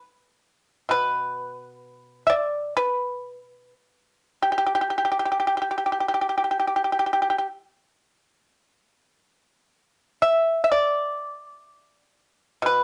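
Chinese traditional solo plucked-string music, elegant and pastoral in a free rubato feel, features a pipa played with fingerpicks, its dry, percussive tone sitting up front from 0.9 seconds across a range from B2 to E5, heard through the gentle haze of a cassette home recording in a moderately reverberant room, in a brief fragment cut from a longer piece that shifts into a new section at 8.7 seconds.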